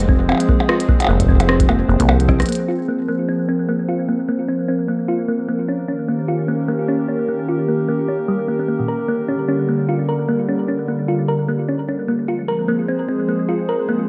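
IDM at 150 BPM with a light swing, eerie and cerebral, where a rubbery, resonant acid bass, an overdriven analog kick and a glitchy kit of clicky hats, blips and rim clicks drop out after a drum fill at 2.3 seconds, leaving a hollow, flute-like chorused pad and a round, tine-like thumb-piano pluck arpeggio, filter-swept from 2.5 seconds, to drift through Fm, Eb7 and Gm under a plate reverb and the warbly pitch drift of worn cassette tape, in a cut from a longer piece.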